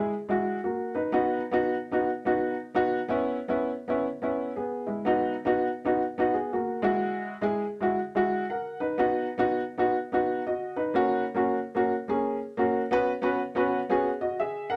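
Uplifting and danceable, this short soul excerpt at 122 BPM in B major features a solo upright piano, woody and slightly detuned with a worn, open character and short sustain, placed up front in a moderate club reverb as it swings through Eadd9, B, C#m7 and F# before settling on Bsus2 at 12.9 seconds.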